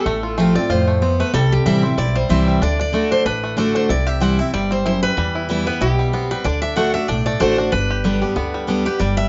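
A driving, virtuosic bluegrass excerpt in G major, moving at a brisk 188 BPM in 4/4 with a light swing on the eighth notes. Two melody voices share the lead: a bright, up-front picked steel-string guitar in the upper register, with audible finger squeak, and a twangy, percussive fingerpicked banjo sitting lower and further back in the mix. A second full-bodied dreadnought guitar, also up front, carries the accompaniment across a broad range from low E up to G. Beneath them, a woody, thumpy upright bass with gut strings is plucked from 0.1 seconds onward. The chords run F/A, C, D, C, Em and D before landing on G at 7.7 seconds, all within a small, wet room whose sound tops out below 7.7 kHz, giving a rounded, intimate character.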